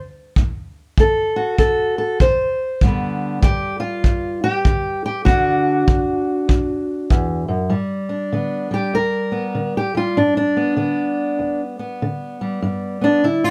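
Swung eighths in 4/4 give this laid-back, swaggering acoustic country blues excerpt its easy strut, as an up-front, boxy fingerpicked steel-string acoustic guitar carries the melody over a tight, natural-sounding kick drum heard from 0.4 to 7.3 seconds, and then the guitar takes a solo from 7.7 seconds, all captured with close, detailed microphones and light reverb.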